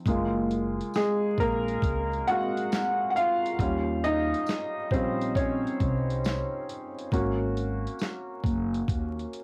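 A soft, felt-muted upright piano sits up front with audible action noise and a low-pass filter, carrying a reflective, melancholic lo-fi hip hop excerpt at 68 BPM with a swung 16th feel, moving from Gbmaj9 to Eb7 to Ab9sus4 over a woody, dark pizzicato upright bass, a gritty sampler-style drum kit with a thumpy kick and tape-colored grit, and a jingly tambourine tucked in the background from 0.9 seconds, all tuned to A4 = 435 Hz and wrapped in light reverb, vinyl crackle and the warmth of a home cassette recording.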